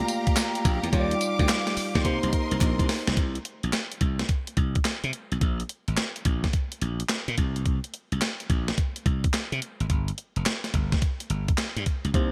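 Bouncy and slick, this short cut from a longer new jack swing R&B track moves at 107 BPM in C minor, with a strong swing on the sixteenths. A mellow tine electric piano and a lush, bowed studio string section with vibrato carry the opening chords of Gm7, Ebmaj9 and Cm7 until 3.2 seconds, while close, crisp group handclaps sit barely audible in the mix. A clean, sampler-style 12-bit drum machine with a thumpy kick, medium-tuned snare, hi-hat, handclaps and tambourine runs up front throughout and plays a fill from 2.0 seconds. A glassy, growly slap bass joins at 0.7 seconds and, with the drums, carries the groove once the chords drop away, and the electric piano returns for a brief touch near the end. Light digital reverb and a bright 1980s-style production give the whole cut a slick sheen.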